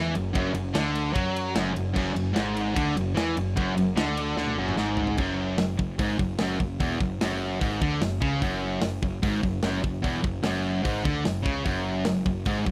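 This dark, relentless heavy metal fragment opens with a wall of riffing guitars and a fuzz-drenched picked bass, joined a split second later by a tight acoustic drum kit in straight 4/4. Out front sits a bright, overdriven electric guitar, backed by a very quiet high-gain guitar and a double-tracked sludgy guitar set further back, all grinding over an E9/F# harmony. The bass, played direct and through an amp, adds a warm, fuzzy low end beneath the riff. The drums are up close and mid-forward, with a tight kick, a medium-tuned snare and a rolled-off top, and a fill from 4.4 to 5.2 seconds drives into the second section. There the sludgy guitar drops out and the band settles onto a blunt F#5, all in a dry, rough home-demo mix that sounds cut from a longer piece.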